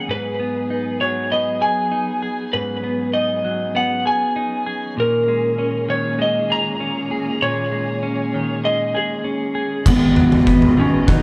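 A live band plays together in one room under a moderate studio reverb, giving this short post-rock passage, cut from a longer piece, a melancholic, cinematic air in a straight 4/4. Up front, a slightly broken-up, compressed electric slide guitar played with fingerpicks carries the melody through a digital delay, while a clean, picked electric guitar plays arpeggios alongside it. Beneath them, a muted studio string section, veiled and con sordino with vibrato and a smooth top, holds sustained chords that move from G#m7 to D#7sus4/A# and back. At 9.9 seconds an oversized low-tuned drum kit comes in, saturated and gritty in a bright stone room with a pumping ambience, dark cymbals, a punchy kick and toms. A picked electric bass enters with it on a low G#1, sitting direct and warm in the background.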